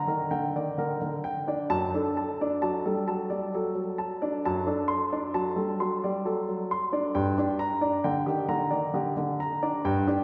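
A classical, baroque-style suite movement in G minor for solo baby grand piano, flowing and dance-like at 66 BPM in 3/4 with a rubato feel, cut from a longer piece. The piano sounds warm, present and polished, placed up front across a range from F#2 to C6, moving from Gm through D/F# and D7/F# before returning to Gm at 7.1 seconds. A wet church reverb with a long 3.1-second decay surrounds the playing, and the sound is softened at the top, as if captured in a church or concert hall.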